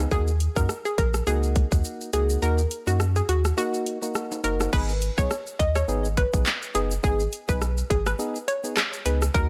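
A dry mix with little reverb opens on a bouncy, hypnotic dancehall groove with a swung feel. A round, deep sine sub bass sits up front beneath a tight electronic kit of kick, dark hi-hats, handclaps, rim clicks, shaker and crash, while a hollow, nasal organ stab pumps with chorus and a bright sawtooth pluck carries the melody through chorus and delay. Ringing egg shaker and timbales sit in the background, the kick drops out from 2.4 to 4.7 seconds, and the harmony moves from D#m to G#m at 4.7 seconds in this fragment of a longer piece.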